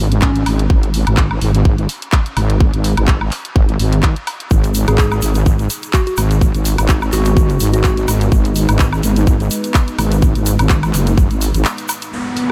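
Aggressive and gritty, this swung bass house passage is led by an overdriven, tight electronic kick sitting up front beside a heavy, saturated wobble bass whose detuned sawtooth tone pumps against the beat through chorus and tube saturation. A layered garage kit of handclaps, hi-hat and woodblock fills out the groove, and a grainy acoustic tube shaker joins in the background. A round, keys-like FM lead with a warbling vintage character appears briefly at the start and returns at 4.9 seconds, its gentle notes trailing into a diffuse ambient delay. From 5.8 seconds, a deep, moody pad adds slow-attack sustained chords that also pump with the sidechain, sitting low in the mix under built-in reverb. After a short break, a downlifter and a close, intimate chamber string section bowing softly sul tasto arrive together at 12.1 seconds, all within a light room reverb.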